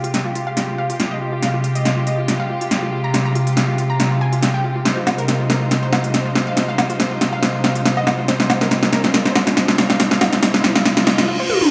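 An overdriven big-room dance drum kit leads this menacing, aggressive excerpt of heavy wobble dubstep at 140 BPM in F minor, its punchy snare, crisp hats, toms and woodblock driving a half-time, lightly swung build-up that is filled with drum fills from start to finish. Beneath it, a rich chamber string section holds earthy, low-pass-filtered Fmadd9 chords with light vibrato, while a detuned sawtooth unison pluck carries the melody through vintage 12-bit sampler grit and tape echo. A very quiet riser and reverse cymbal enter at 7.3 seconds, all set in a lush hall reverb over small room ambience.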